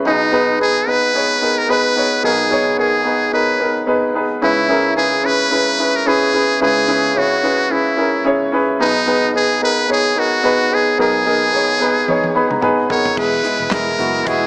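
A clear, slightly worn grand piano opens this bittersweet, dramatic piano-driven pop piece, its short-sustained chords sitting up front with audible action noise at 110 BPM in 4/4 with a light swing on the sixteenths. Almost at once a metal-muted trumpet takes the melody, its buzzy, thin, brilliant tone close-miked and carrying vibrato and scooped notes in a pop solo style. The harmony moves from G#m/B to C#m7 and back before the piano and a modern studio drum kit play a fill together at 12.1 seconds, the kit bringing a punchy kick, a medium-tuned snare, toms, hi-hat, handclaps and crash cymbal in an airy, polished room. At 13.2 seconds the music lands on E as a new section begins, with a lush, woody string section bowing sustained chords in the background and a dark, round, foam-muted electric bass entering beneath. Light reverb and a small-room ambience surround the parts, and the whole recording has a small-speaker quality before this cut from a longer piece ends at 14.5 seconds.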